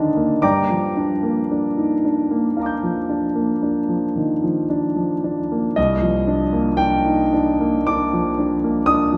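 Set in the wet bloom of a recital hall, this nocturnal, wistful fragment of impressionist solo piano drifts in a rubato 5/4 as an intimate, up-front concert grand, its action noise audible and its bass deep, moves from Gm7 to Cm11 at 5.8 seconds, when its opening phrase returns.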